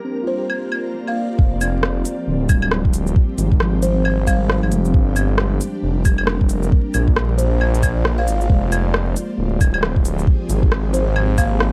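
A swung sixteenth-note groove in 4/4 drives this nocturnal, wistful future garage passage, taken from a longer piece. Crisp hats, claves, rim clicks and shaker from a tape-warm, up-front electronic kit carry the rhythm, and a soft kick arrives at 1.4 seconds together with a menacing, saturated detuned saw bass that swells through a filter and pumps against the beat. Underneath, an ethereal, airy pad holds sustained chords with ensemble chorus and reverb, while muted, felt-like synth keys sit dark and intimate in the background, pumping and trailing tape echo. A reversed, dreamy granular texture glows in the opening moments before the bass enters. The melody comes from a woody, buzzing kalimba with analog delay, which pauses between 4.6 and 7.4 seconds, and a haze of vinyl crackle and low-pass filtering wraps the whole recording in a dusky, lo-fi atmosphere.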